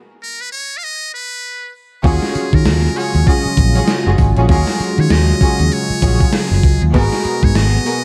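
A muted trumpet opens alone with a buzzy, brilliant melody over a two-second stop before the full band drops in at 2.0 seconds, launching a punchy, confident new jack swing groove in Eb minor at 98 BPM with a swung sixteenth-note feel. A gated, overdriven drum machine with a thumpy kick, gated snare, hi-hat and tambourine drives things alongside a round, foam-muted electric bass sitting up front, while a polished grand piano, reedy studio strings playing stabs and a shimmering chorused pulse-width pad in the background fill out the Ebm11 harmony before a shift to Abm9 at 6.9 seconds. The dark, dry production keeps this excerpt tight and close.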